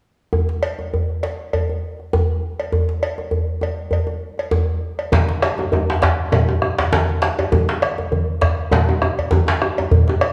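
A tight, cracking djembe played with hard hands sits up front from 0.3 seconds, joined almost at once by a close, metallic cowbell in this driving, earthy West African drum ensemble at 100 BPM in 4/4 with a light sixteenth-note swing. At 5.1 seconds a round bombo, low-tuned congas with thick skin and soft hands, and a second, medium-tuned djembe with a vintage, band-limited tone come in and fill out the groove. The whole cut sits in a wet recital hall reverb and carries the worn, warbly pitch drift of old cassette tape.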